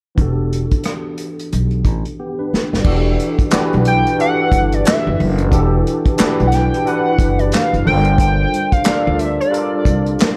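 A barky, lightly overdriven tine electric piano with ensemble chorus fronts this sultry, late-night R&B and neo-soul excerpt at 90 BPM with swung 16ths, backed by a woody, thumpy pizzicato upright bass with gut strings and a roomy acoustic kit played with bundle sticks, with dark cymbals, handclaps and rim clicks, that adds a drum fill at 2.2 seconds, before a hollow, detuned square lead with chorus, phaser, vibrato and portamento enters at 3.9 seconds, in a dark, warm production with light reverb where the harmony shifts from Em11 to Gm11 at 7.8 seconds.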